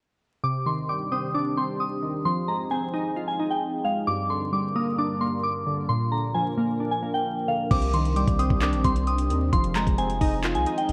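A soft, pure FM synth bell carries the melody up front in this eerie, menacing half-time trap excerpt, paired with glassy, detuned digital keys with a sub octave and a noise layer, both treated with chorus and a low-pass filter. From 1.0 seconds a warbling, nostalgic sawtooth pad adds sustained chords with its own reverb, the whole piece sitting in a worn cassette haze of vinyl crackle and drifting pitch. At 7.7 seconds a knocking trap kit with kick drum, metallic hi-hats, handclaps and crash cymbal arrives, along with a deep, dark sine 808 bass holding long, decaying notes.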